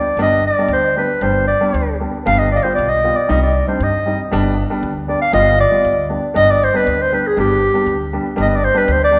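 Soulful and festive, this klezmer excerpt in 2/4 starts around 118 BPM and speeds up throughout, with a warm, soft-attacked clarinet carrying the melody up front in a classical style. A woody, slightly detuned upright piano with short sustain accompanies it, while a dark pizzicato upright bass with steel strings enters at 0.2 seconds. The harmony moves from G through G7 and C minor back to G, all bathed in a lush, reverberant hall ambience.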